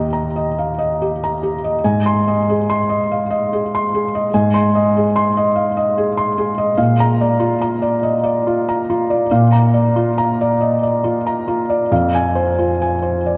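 A felt-muted upright piano sits up front in a vast, echoing space, its soft, mellow tone wrapped in a long cathedral reverb that trails about 4.8 seconds, with the top end rolled off so nothing rings above 7.7 kHz. This short excerpt, cut from a longer neoclassical minimalist piece, moves at a slow 48 beats per minute in 6/8, its beats uneven and pulled by rubato. The piano plays alone throughout its 13.4 seconds, spanning from Eb2 up to C6, and the audible action noise of the instrument gives it a close, intimate, natural character. The harmony drifts from Eb to Ab, then to Bb at 6.8 seconds, settling on F minor at 11.9 seconds. The mood is reflective and melancholic, a quiet, private moment hanging in a cavernous room.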